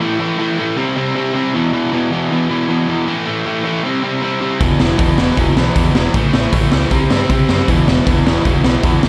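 Angry and raw, this punk rock excerpt opens with a dark, biting overdriven guitar and a bright, compressed distorted guitar playing up-front riffs over A5, C5 and E5 power chords, until at 4.6 seconds a round, growling picked bass sits in the background with overdrive and a gritty, saturated garage drum kit arrives with a punchy kick, a high-tuned snare, hi-hat and a rolled-off top in a light reverb.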